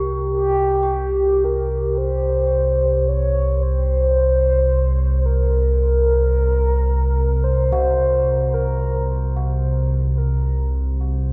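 A deep, rumbling drone sits up front in this ominous dark ambient passage, its detuned, wave-folded tone holding low and steady in free time through the full 11.3 seconds. Above it, a round, horn-like synth lead with chorus, vibrato and delay sings a soft-edged, sustained melody that drops out at 9.6 seconds. Further back, a bronze gamelan-type metallophone rings out delayed arpeggios, all set in a cavernous cathedral reverb.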